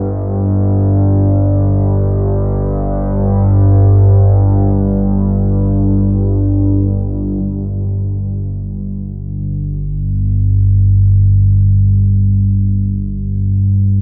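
A vast, echoing cathedral reverb wraps this dark, desolate excerpt of ambient drone, which drifts in free time with one analog drone playing alone and up front from 0.0 to 14.0 seconds. The sawtooth and pulse-wave tone, shaded by pulse-width modulation, sounds warbling, resonant and vintage, its slow attack and long release letting each low note between G1 and G2 sustain and evolve through chorus and a diffuse ambient delay. A shift into a second section arrives at 7.4 seconds.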